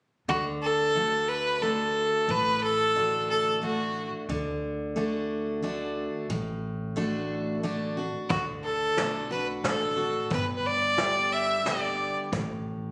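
A relaxed 3/4 pulse at 90 BPM carries this easygoing, nostalgic honky-tonk and classic country passage in D major, cut from a longer piece and moving from D to G at 10.3 seconds. A bright, full-bodied picked steel-string acoustic guitar sits up front throughout with a woody, thumpy pizzicato upright bass beneath it, while a clear, focused fiddle with light vibrato sings the melody in two phrases, the second arriving at 8.3 seconds just as a vintage brush kit joins with a punchy kick and a rolled-off top. The sound has a homey character, as if captured on a phone in the room, with light reverb and compression.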